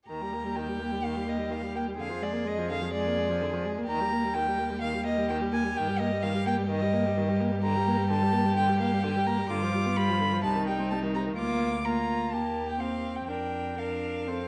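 A spirited, cheerful classical-period string quartet movement at a quick 127 BPM opens in E-flat major and turns toward B-flat major at 7.6 seconds, with an up-front first violin carrying a reedy gut-string melody high above a second violin's inner line, a distant, nasal viola accompaniment and a dark, smooth-topped cello bass, all bowed with period-style tone in a wet recital hall.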